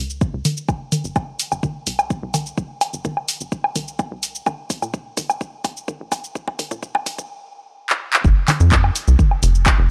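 Melodic techno with a hypnotic, driving mood, cut from a longer piece, where a tight sawtooth-and-square sequencer bass with a plucky filter pumps up front against a punchy layered electronic kick and a house kit of congas, handclaps, warm hats, shaker and woodblock, building with drum fills until a drop at 8.2 seconds, all captured as a dry, gritty hardware recording with transformer saturation and cassette-tape character.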